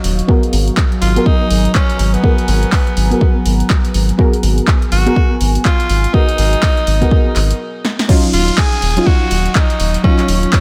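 Deep house with a deep, hypnotic mood, where a moody detuned pad with sidechain pumping and chorused, delayed mellow chord stabs sit over a round analog bass, an overdriven up-front kick entering at 0.3 seconds and a punchy tape-warm drum machine with crash, claps, hats and snare, while a raspy, gritty tenor saxophone with scooped notes and delay leads from 1.0 seconds, all soaked in dreamy hall reverb until a brief stop and drum fill give way at 8.1 seconds to a drop with a background downlifter.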